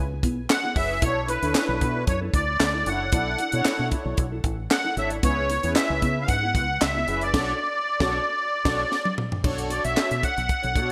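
A reedy, shimmering musette accordion carries the melody with tube saturation and delay over a danceable, late-night slice of early-eighties boogie funk, backed by a tight, dry drum kit with a high-tuned snare and gated reverb, a round, punchy dub bass, sawtooth synth brass with chorus, a dark, clean electric guitar riff in the background and very quiet, crisp group handclaps, in a bright 1980s-style digital production where a band accent arrives at 7.3 seconds and a drum fill leads into a new section at 9.4 seconds.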